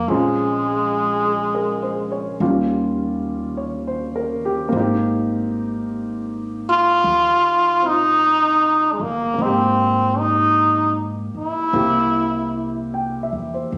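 Caught on a phone in the room with light reverb and compression, this tender, late-night jazz ballad in Ab major moves at a slow, swung 52 BPM: a close-miked, buzzy trombone in a metal mute carries the melody with light vibrato and a soft attack until 12.9 seconds, over a warm, natural concert grand piano with deep bass and a woody, thumpy pizzicato upright bass.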